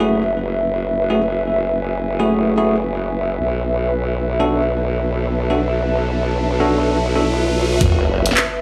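Swung sixteenths give this gritty, swaggering glitch hop excerpt its strut: bell-like electric piano stabs with tape echo and sidechain pumping ride over an up-front, sawtooth-edged formant wobble bass and a cloudy, evolving granular pad, until a riser from 6.0 seconds lands on a sub drop at 7.8 seconds, where a cracking snare, handclaps, hi-hat and a knocking electronic kick burst in through a lush hall reverb.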